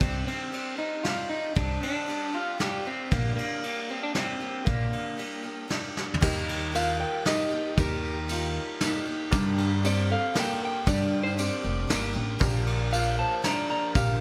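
A slightly broken-up electric guitar, played through a small old amp with harmonic tremolo, carries the melody up front in this stirring, bittersweet indie folk passage in G minor, a 3/4 cut from a longer piece at 116 BPM. Beneath it, a picked twelve-string acoustic guitar shimmers with lush chorus in the background. A woody, thumpy upright bass played pizzicato sits up front, and a vintage brush kit with dark cymbals, a punchy kick and gated reverb keeps time. After a drum fill at 6.0 seconds the arrangement builds: a brilliant baby grand piano and a worn, slightly detuned upright piano playing arpeggios enter at 6.2 seconds with a jingly tambourine. A delicate, bell-like celesta follows at 6.7 seconds with a second line, dressed in lush chorus and delay. The chords move from Cmadd9 through Gm/Bb and Eb to Gm and Bb, all set in moderate plate reverb with bright 1980s-style digital production.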